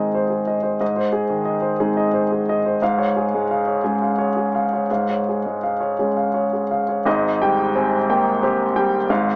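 An upright piano plays alone from the very first moment, its woody tone sitting up front and close enough that the noise of its action can be heard. This is neoclassical minimalist piano in 6/8, played with a free, rubato feel that gives the short passage a hopeful, intimate mood. The piano spans from Ab1 to Ab5, and its polished sound rings with long sustain. The harmony shifts at 2.8 seconds, and a second section begins at 7.1 seconds with another change of chord before the fragment ends at 9.4 seconds. A light reverb and a small-speaker quality frame the piano.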